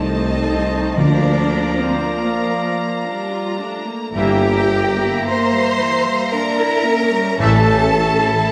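A yearning, elegiac classical passage in rubato 3/4 opens at once with a chamber violin section carrying the focused, vibrato-laden melody over lush symphonic violins, oboe, clarinet and an airy wooden flute on second lines, background violas, sustained chords from mellow French horns and very quiet trombones, distant dark trumpet stabs, and a bass of expressive cellos, double basses and tuba, while very quiet hard-mallet timpani enter at 1.0 s and return at 7.4 s, set in a reverberant scoring-stage acoustic.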